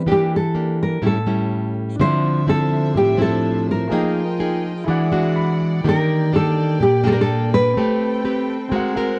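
A dark, softly reverberant production frames this intimate, melancholic bossa nova fragment, where an up-front, thumb-plucked nylon-string guitar carries the melody with a plate-reverb sheen over a second, fingerpicked nylon-string guitar whose finger squeaks stay audible, before a deep-bassed concert grand piano slips in quietly in the background at 2.0 s, adding fills at 5.1 s and 8.7 s, alongside a close chamber string section holding sustained, sul tasto chords with light vibrato and a soft attack.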